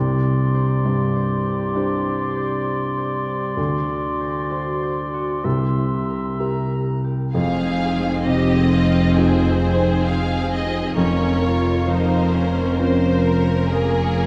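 Rubato and unhurried in 4/4, this moving, bittersweet stretch of cinematic film score opens on a soft, felt-muted upright piano sitting up front with a ringing harp behind it, while mellow clarinet, pure silver flute and smooth oboe play quiet second lines until 7.0 seconds. At 7.3 seconds the orchestral strings enter: a clear, intense violin section carries the melody from a distance, joined by a second violin line with a soft attack, a lush viola section in the background, and cello and double bass sections holding the bass. Scoring-stage reverb gives the whole passage a spacious, wet glow.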